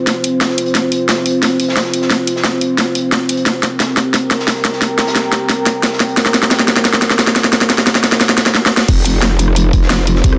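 A straight 4/4 pulse at 177 BPM drives this tense, futuristic slice of dark technical drum and bass, cut from a longer piece. For the first 8.9 seconds a build-up unfolds as drum fills run through it: an up-front drum and bass kit with a cracking snare, bright hats, rim clicks and crash cymbal, all overdriven, sits over a gritty, saturated breakbeat kit in the background whose medium-tuned snare and hi-hats have a rolled-off top. Beneath them a deep, moody analog pad holds sustained chords on an F5 chord, its detuned sawtooth and triangle tones thickened by a sub octave and chorus, with a slow attack and sidechain pumping. At 8.9 seconds the drop lands: a knocking, tape-toned electronic kick punches up front, and a growling, aggressive bass enters with a wobbling formant-filtered sound, saturated and compressed with chorus. A moderate plate reverb adds space, and the master is dense and heavily limited.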